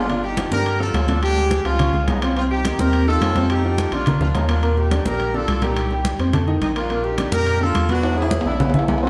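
A band playing live in one stone room, wrapped in a wet reverb, drives this danceable, passionate salsa excerpt at 212 BPM in G minor. A clear, punchy horn section with vibrato carries the melody up front, while a brilliant vintage grand piano supplies the accompaniment and a round, deep analog bass with a wave-folded, mellow tone anchors the low end. Close, dry congas struck with hard hands and ringing metal-shell timbales drive the groove through a progression moving from Gm7 toward Bbmaj7 and E7, with a drum fill arriving at 8.0 seconds.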